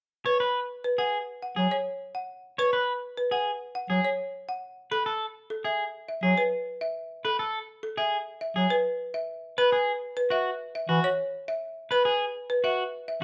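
A lightly reverberant, close-up sound frames this short, urgent and hypnotic cut from a longer piece of minimalist classical pattern music in a straight 4/4. A folk marimba struck with hard mallets carries the melody from 0.3 seconds onward, its hardwood bars sounding woody, dry, rustic and percussive as the line moves between A4 and F#5. Alongside it, from the same moment, an electric guitar at the edge of break-up plays picked arpeggios in a narrow middle register, its tone twangy and slightly gritty. At 1.6 seconds a clear bass clarinet joins with a low accompaniment in a classical style, staying close to E3 and F#3 until 11.0 seconds. The harmony moves from a lone C#5 to a rootless F#m9 and then an Eadd9, with the marimba and guitar sounding together through to 13.2 seconds.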